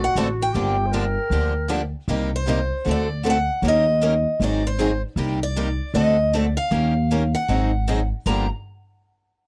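A fresh-stringed, parlour-sized steel-string guitar carries the melody up front, its picked lines ringing bright and boxy high over a bittersweet minor-key progression in this swinging jazz manouche fragment cut from a longer piece. A growling clarinet adds a raspy, subtoned second line with scooped notes and light vibrato, sounding distant and roomy, but it drops out after 1.9 seconds. Beneath, a pizzicato upright bass with gut strings gives a woody, thumpy, dark foundation placed close in the mix. From 0.2 seconds two more picked acoustic guitars fill in the accompaniment: one bright and boxy with a small-bodied parlour tone, the other a concert-sized instrument sitting in the background where a finger squeak slips through. The chords move through seventh and ninth colours such as Cm9, D7b9 and Eb9 before settling back on Gm7, all captured in a dry, close studio sound with a 1970s character.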